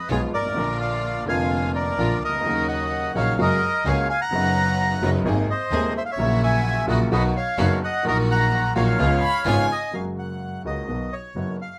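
A reedy bandoneon leads this playful, elegant tango excerpt in Eb minor at a rubato 128 BPM, over an intimate, woody upright piano with audible action noise, a dark bowed double bass sliding with vibrato, and lush, focused string stabs, while a close, expressive solo violin adds a brief second line from 9.2 seconds, all in moderate studio reverb.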